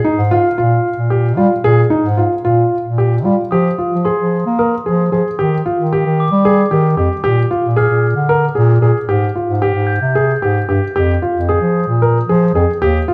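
Playful and restless, this chamber music excerpt moves in a straight 7/8 at 226 BPM in eighths, in Bb mixolydian. An intimate grand piano, its action noise audible, plays arpeggios up front beside a mellow, smooth-topped bass clarinet carrying the bass in classical style, while a soft, bell-like glockenspiel struck with rubber mallets adds an airy, ringing texture. The harmony opens on Bb5, then shifts at 3.5 s through Fm7, Ebmaj9, Bb7 and Abmaj7, heard in a dark production with a moderate recital hall reverb.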